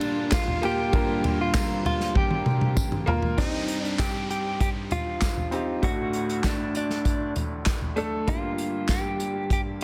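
Earnest and bittersweet, this piano-driven pop excerpt moves in a straight, steady four. A bright upright piano sits up front, woody and intimate with audible action noise and long sustain, carrying the accompaniment, while a clean, picked electric guitar recorded direct carries the melody with harmonic tremolo and tape echo. An acoustic drum kit played with bundle sticks gives a punchy kick, a medium-tuned snare, dark cymbals, toms and handclaps, and a close, dry, jingly tambourine rests in the background. A very quiet, earthy string section with light vibrato holds sustained chords until 3.4 seconds, just as a drum fill from 2.2 seconds leads into the next section and an electronic downlifter enters. Light studio reverb surrounds a dense, heavily limited modern master.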